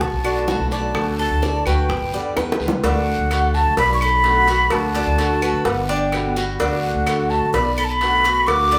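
A relaxed, straight 4/4 groove drives this short excerpt of Cuban son and guajira, carried by a thumpy, dark upright bass played pizzicato on gut strings up front, with tight, high-tuned bongos and cowbell struck with hard hands. Over it, a mellow, hollow jazz flute sings the melody with airy vibrato and a crisp, chiffy attack, close-miked and sitting highest in the mix. A bright, boxy acoustic guitar picks a swing-style accompaniment with audible finger squeak, while a Cuban tres adds metallic arpeggios from its doubled strings. Further back, a raspy, compressed guiro and woody claves fill out the percussion, the claves coming in at 0.2 seconds. The harmony circles through Bm7, D and G, a drum fill at 2.4 seconds leads into the second section at 2.8 seconds, and the whole band plays live together in a large room with a wet studio reverb that gives the warm, easygoing mood a spacious glow.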